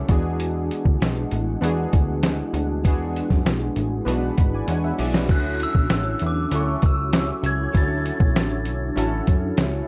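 Sunny and laid-back, this short indie bedroom-pop cut rides a muffled, thumpy sampler-style drum kit and a punchy, plucky analog bass up front, with a twangy, slightly broken-up electric guitar and round, detuned analog keys under chorus and cassette-tape coloring moving from E9 to Dmaj9, a keys fill from 4.1 seconds and a drum fill from 4.7 seconds, and a bell-like glockenspiel with soft plastic mallets and analog delay carrying the melody from 5.3 seconds, all in a dark production with light reverb.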